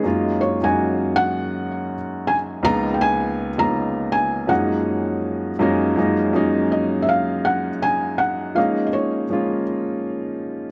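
Relaxed and soulful, this short R&B passage moves at 81 BPM in 4/4 with a gentle sixteenth-note swing, centered in F# major. A felt-muted upright piano carries the melody between C#5 and A#5, its tone soft, mellow and dark, with thick felt, short sustain and audible action noise. Beneath it, a second upright piano handles the accompaniment from C#2 to F#4, sounding woody, polished and present, with long sustain and its own action noise close at hand. Both pianos sit up front in an intimate mix, bathed in a moderate echo-chamber reverb with a 2.0-second tail that deepens the warm production. The harmony moves from F#69 to C#13 at 2.6 seconds, back to F#69, then to A#m7 at 8.6 seconds, and the melody stops at 9.6 seconds while the accompaniment rings on.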